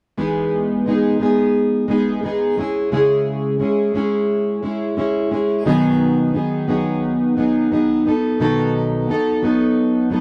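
A dry, close 1970s-style studio sound with light reverb frames this heartfelt, carefree pop excerpt at 88 BPM in E major, where a double-tracked, up-front, full-bodied jumbo steel-string acoustic guitar with fresh strings fingerpicks a gently swung accompaniment from 0.2 to 10.2 seconds through Emaj7, C#m, G#m7/B and B7.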